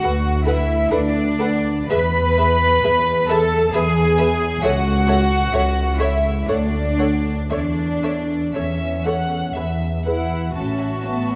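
A serene, slow romantic movement for string orchestra in a gently rubato three-four, with all five sections entering together: a warm, intimate violin section carries the melody with light vibrato and a soft attack, while a second violin section adds a pure, floating line. Dark, woody violas fill in the accompaniment, and a cello section and an up-front, lush double bass section anchor the low end, every part bowed sul tasto. A moderate scoring-stage reverb and a layer of vinyl crackle surround this brief excerpt, whose harmony moves from Bm7/D through E and A/C# to settle on A at 10.6 seconds.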